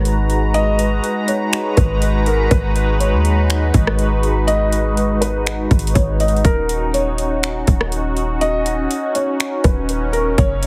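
A half-time 4/4 groove at 122 BPM drives this hazy, ethereal cloud-rap excerpt in G# minor: a trap kit of finger snaps, metallic hi-hats, rim clicks and a hard-clipped, overdriven kick sits up front beside a deep, boomy 808-style sine bass with a fast attack and dark decay. A detuned sawtooth analog pad holds slow-blooming sustained chords through chorus, phaser, tremolo and sidechain pumping, moving from G#m7 to D#m7 at 6.4 s. From 0.5 s, a soft, felt-muted upright piano carries an intimate melody with audible action noise and digital delay, all set in a digital ambience with a heavily compressed, radio-like sound.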